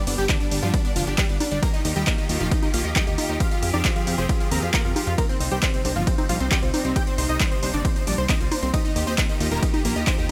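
Huge, airy supersaw chords with dub echo and sidechain pumping open this emotional, euphoric uplifting trance excerpt, backed by a catchy, mellow plucky unison lead, a smooth bowed string section with vibrato and a lush detuned pluck playing arpeggios; a funky, wave-folded analog bass and an overdriven drum machine with congas, handclaps, hi-hat and ride cymbal join at 0.1 seconds, and an up-front, overdriven punchy kick lands at 0.3 seconds, all over chords moving from G through Ebadd9, Fmadd9 and Cm7 with little reverb.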